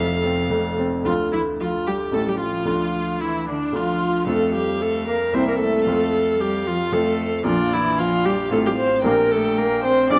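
A cheerful, graceful classical-period piano quartet movement in D minor moves quickly in 3/4 at 113 BPM with a rubato feel, opening with all four players at once as a rich, floating violin sings the melody over a pure, soft-attacked cello second line, while a brilliant baby grand piano with long sustain and an intimate, airy-bowed viola with vibrato sit up front in the accompaniment, all heard through close, detailed microphones in a moderate recital hall reverb.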